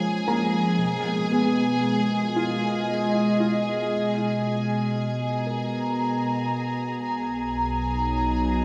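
Luminous and warm, this short ambient fragment drifts in a gentle 3/4 with a dreamy, reverb-soaked haze from a lush hall. A warbling, tape-like pad sits up front, its detuned sawtooth and triangle tones blooming slowly into nostalgic, lo-fi chords with chorus, while a filter sweep moves through it and the harmony shifts from G#m69/B to G#m/B. Behind it, a felt-muted upright piano plays soft, intimate arpeggios through analog delay, its dark, vintage tone carrying audible action noise as it fades out over the first 7.0 seconds. A clear studio violin section adds a bowed ensemble texture with light vibrato and a biting intensity beneath a smooth top. At 7.0 seconds the harmony opens onto Bmaj7 as a round sine sub bass enters, deep and mellow, sustaining to the close of this portion of a longer piece.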